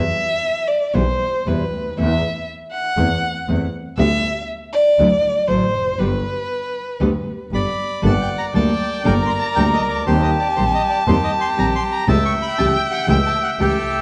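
Tango at 119 BPM in 4/4 with a rubato feel, this dramatic, tense excerpt of a longer piece moves from G major into G harmonic minor at 8.0 seconds. A bowed violin carries a solo for the opening eight seconds, its tone expressive with vibrato and portamento, before settling into a second line. Beneath it, a fingerpicked nylon-string guitar gives deep classical accompaniment, while a bowed double bass, clear and earthy with light vibrato, sits up front yet sounds distant. At 7.5 seconds a reedy, bright, airy bandoneon enters with the melody, reaching up to C#6. The chords pass through Em, Am/E and G before the minor turn brings Gmadd9, Eb6 and A7/C#. A moderate recital hall reverb and a dark production give the whole ensemble a sense of space.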